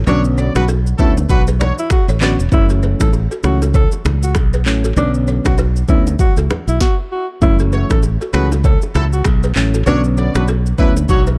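Afrobeats in F# minor at 98 BPM, this mellow, hypnotic excerpt from a longer piece rides a 16th-note swing over chords that move between Bmadd9 and F#m7. A breathy alto saxophone with light vibrato carries the melody, while a clear, punchy horn section adds a second line from 0.1 to 2.3 seconds and returns at 7.7 seconds. Underneath, a bright, growly fingered electric bass and an electronic afro-pop drum kit with a deep kick, sharp snare, rim clicks, handclaps, finger snaps and shaker sit up front. Soft, round electric-piano-like synth keys warble with chorus, and a woody, buzzing balafon riff played with soft rubber mallets carries tape echo, as does the saxophone. Very quiet congas and bongos ring with hard hands in a small room. The groove breaks into a brief stop at 6.8 seconds before the section repeats, all within a dark production with small room ambience.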